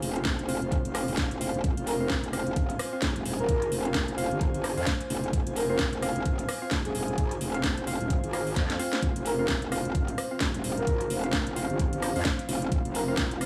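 Bass house with a bouncy, gritty swing, cut from a longer piece, built on an up-front metallic wobble bass with sidechain pumping, a knocking electronic kick and a garage kit of cracking snare, rim click and metallic hats, while a hollow, wave-folded organ stab with tape echo and an airy pad sit beneath a soft, breathy flute-like lead with vibrato that enters at 1.9 seconds, a drum fill arrives at 8.6 seconds, and a deep, moody ambient pad joins at 10.2 seconds in a small room.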